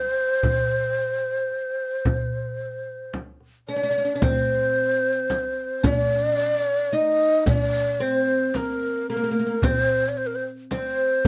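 Set in a straight 10/8 at 111 BPM in eighths, this Arabic maqam ensemble piece, cut from a longer work, feels longing and hypnotic. A breathy low ney carries the melody up front with vibrato, tongued notes and an unsteady tone, while a bright, woody, fretless oud with double strings plays a second line beneath it. The crisp metal-shelled darbuka and a deep, close frame drum join at 0.4 seconds, and a dry riq with jingling highs enters softly in the background at 4.2 seconds, all within a light reverb.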